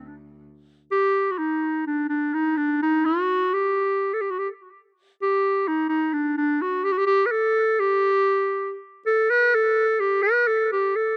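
A lone clarinet enters at 0.9 s, playing a Turkish melody in free time in D makam hicaz, with the tuning set at A4 = 441 Hz. Its classical-style tone is clear, with a smooth top, and it sits up front, moving within a compact span from D4 to B4-38c. A slapback echo trails the clarinet, while the outdoor setting keeps the surrounding sound dry and open with little reverb. The mood is warm and stately, unhurried by any fixed pulse. This brief passage is cut from a longer piece and ends at 11.2 s.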